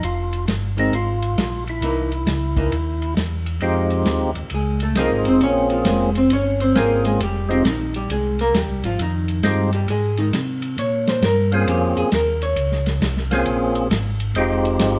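Soul jazz organ trio with a soulful, smoky mood and a swinging 4/4 feel, cut from a longer piece. A fat, lightly overdriven tonewheel organ with percussive bite and slow rotary speaker carries the melody, while a second, mellow and round organ voice with key click lays down the bass and a muffled, lo-fi acoustic drum kit with dark cymbals and a tight kick keeps time on hi-hat, ride, snare and kick. A dark, clean hollow-body electric guitar enters at 0.8 seconds, takes a picked solo from 3.6 seconds over minor-key changes and stops at 12.8 seconds, all in a moderate room reverb that suggests the band playing live together.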